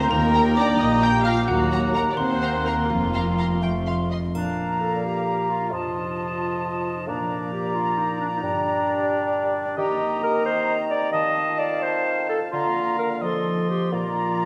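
A roomy scoring-stage reverb gives this cinematic film cue a soft halo, and the cut from a longer piece opens in the middle of a playful, mischievous, whimsical scene. It moves in a straight 6/8 at 87 BPM in B-flat major, opening on E-flat and darkening briefly through E-flat minor before settling onto F and resolving into a brighter B-flat passage. In the opening seconds a full orchestra is heard: a woody, dry xylophone played with plastic mallets carries the tune in the background alongside a very quiet, lush violin section, while a second violin section adds a smooth supporting line. Rich violas, focused cellos and distant, expressive double basses fill out the strings beneath mellow, very quiet French horn chords. The xylophone, violas and horns fall away at 3.6 seconds and the remaining strings at 4.2 seconds, and at 4.3 seconds a dark-toned triangle enters, close and in the background. 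From there the woodwinds and harp carry the cue to 14.5 seconds: an airy, crisp flute group, a warm oboe and a clear, distant clarinet weave second lines over a soft-edged bassoon and a ringing, thumb-plucked concert harp in arpeggios.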